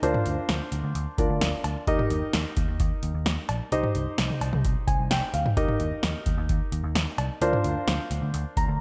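Wistful yet upbeat, this brief synth-pop excerpt sets a polished grand piano with a short sustain and slapback echo over a dark, round, foam-muted electric bass and an analog electro drum machine with a deep kick, punchy snare, metallic hats, cowbell and toms. The piano adds fills at 4.6 and 8.3 seconds as the chords move from Bbadd9/D through Eb and Cm back to Bbadd9/D. A lush hall reverb gives the whole a big arena sound.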